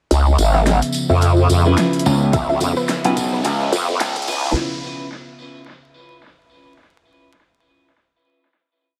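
An echo-heavy mix with vinyl crackle and light reverb frames this gritty, swaggering glitch hop build at 108 BPM over a C#7#9 chord. A growling, wobbling bass sits up front over a smooth sawtooth pad carrying 12-bit grit and sidechain pumping, joined by an overdriven pop drum kit with a fat snare, hand-played jingly tambourine and a very quiet, nasal wave-folded pluck melody. Sparse, clean semi-hollow guitar stabs enter at 1.7 s, followed by a punchy overdriven slap bass, and a knocking electronic kick and a riser arrive at 2.3 s as the filter sweep runs toward a final hit at 4.6 s.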